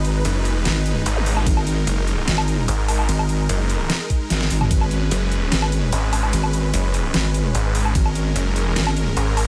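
Heavy wobble dubstep in a menacing half-time feel, this short excerpt pairs a chorused, mellow square-wave wobble bass with a growling, detuned sawtooth bass that snarls in from 0.2 seconds, under lush, bright supersaw chords with phaser and sidechain pumping, while an overdriven dubstep kit of deep snare, bright hats, ride, toms and woodblock plays in a small room, a knocking electronic kick hits up front at 1.5 seconds, from 4.1 to 4.8 seconds and at 8.0 seconds, a drum fill arrives at 4.3 seconds, and a brief electronic zap flickers in the background.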